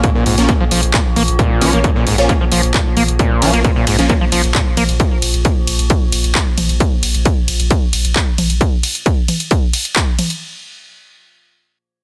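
Set in a lightly reverberant space, this short cut from a longer piece of driving peak-time techno lands straight in the drop, pushing hard at 133 BPM in 4/4 on a Bb minor chord. An overdriven, heavy electronic kick sits up front with a layered techno kit of handclaps, hi-hat, ride cymbal and toms, and the kit carries on to the very end. Beneath it, a deep, thick sub bass holds a saturated Bb1 through overdrive and a low-pass filter, pumping with the sidechain until 8.6 seconds. The screaming acid riff is a squelchy, resonant sawtooth line with a filter sweep, heavy distortion, chorus and tape echo, spanning Ab2 to Bb3 before dropping out at 4.8 seconds. A punchy, detuned supersaw stab enters at 0.4 seconds in the background, its filter pluck and moving notch colored by ensemble chorus and tape echo. Also tucked behind, an eerie, metallic FM drone with a slow attack and long release adds an inharmonic, mellow haze through chorus and its own reverb, giving the track an intense, relentless edge.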